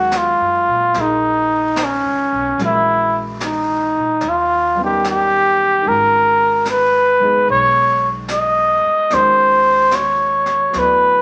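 Wet studio reverb gives this short excerpt a close, intimate glow, with the trumpet placed up front and the rhythm section sitting behind it. It is a melancholic jazz ballad with a slow swing feel. A breathy trumpet carries the melody in a mellow, whispered tone, with light vibrato, soft attacks and scooped notes. Beneath it, a warm concert grand piano plays accompaniment with a deep bass, while a woody pizzicato upright bass holds down the low end. A jazz kit played with brushes enters at 0.1 s, its high-tuned snare and hi-hat sounding mid-forward with a rolled-off top. The harmony moves through Ebm9, Bbm7b5, Eb7b13 and Abm9 before arriving on Ebm7.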